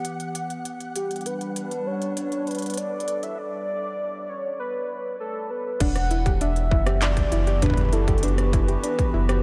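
Eerie and melancholic, this short IDM excerpt drifts in a dreamy wash of huge ambient reverb, where a warbling, lo-fi tape-like pad holds dark sustained chords under crisp overdriven industrial drums with handclaps, rim clicks, hi-hats and crash, a grainy flickering texture sits in the background until 3.4 s, a velvety up-front synth lead with vibrato carries the melody from 1.0 s, and at 5.8 s a soft round pluck arpeggiates alongside a deep sine sub bass and a distorted kick drum.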